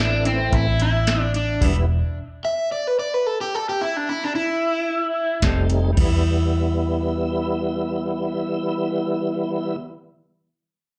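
An overdriven, hollow-bodied lead guitar with phaser and slapback echo sings a soulful, mournful line over a straight-eighth soul blues groove heard live through a club PA, backed by a full tonewheel organ with key click, chorus vibrato and slow rotary speaker, a round, foam-muted bass, dark, clean guitar stabs in the background and a soft analog rhythm box with deep kick, crisp snare and metallic hats, until the band stops at 1.6 seconds and leaves the guitar alone before returning at 5.4 seconds.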